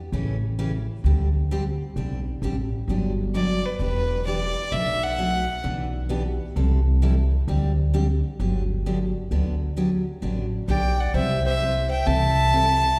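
A swung 4/4 pulse at 131 BPM drives this playful, down-home western swing clip in G major, cut from a longer piece. An upright bass sits up front with a woody, thumpy gut-string tone, plucked low beneath a bright, full-bodied dreadnought acoustic guitar. The picked guitar has fresh strings with audible finger squeak and a slapback echo as it moves through jazzy changes like Gmaj7, Em7 and D7sus4. A single bowed fiddle carries the melody up close, earthy and airy with light vibrato, appearing briefly at 3.4 seconds and returning at 10.7 seconds. At that same moment a soft-attack clarinet enters with a jazz-style second line, its tone warm and vibrato-tinged, and it shares the fiddle's slapback echo. The performance sounds like a live gig heard through the venue's PA, with a recital-hall reverb around the small band.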